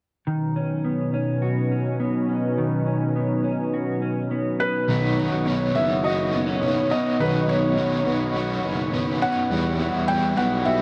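Bathed in a huge, dark ambient reverb, this blissful, dreamy dream pop excerpt at 104 BPM in B major opens with a smooth, detuned analog pad holding sustained chords beneath clean, compressed electric guitar arpeggios with chorus and delay, before a soft felt-muted upright piano with audible action noise takes the melody from 4.6 seconds, and at 4.9 seconds an overdriven semi-hollow guitar with tremolo enters together with a punchy, distant tuba playing scooped bass notes as the harmony moves from Badd9 to Emadd9.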